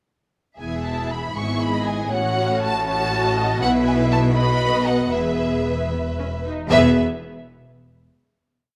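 A dark, warm production in a moderate recital-hall reverb frames this short, complete piece, a quick, cheerful and graceful classical-period movement for string orchestra in E major, moving in a rubato 6/8 at 78 BPM. Up front, a lush first violin section sings the melody with soft attacks and expressive vibrato. A focused second violin section and a clear, intense viola section play chords in the rhythm of the tune, the violas also answering at phrase ends, while a smooth cello section sustains the bass in the background, doubled by a bright, bowed double bass section, before all settle on a final chord at 6.7 seconds.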